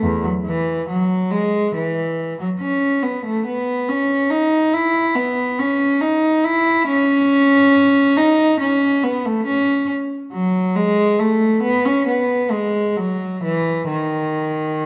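Bathed in the wet reverb of a recital hall, this serene, flowing fragment of a baroque-style classical suite movement features a single bowed cello, up front and alone for its full 14.9 seconds, its reedy gut-string tone shaded with light period-style vibrato as it ranges through E major at a rubato 70 BPM in 4/4.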